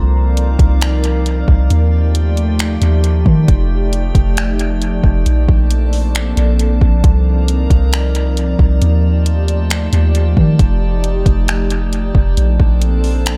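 Atmospheric cloud-rap in C dorian at 135 BPM with a half-time feel, this hazy, ethereal excerpt cycles through lush extended chords from Cm11 through Ebmaj9#11 and F13 to Bbmaj9, carried by a glassy FM pad with ensemble chorus, built-in reverb and sidechain pumping, over a deep, round 808-style bass that sits up front with a fast attack and dark decay. A faint drifting glass-harmonics texture floats higher with calm, chorused overtones and long release. At 0.4 seconds a smooth, tape-warm R&B drum kit joins with soft kick, hi-hat and finger snaps, set up front in an echo-heavy mix.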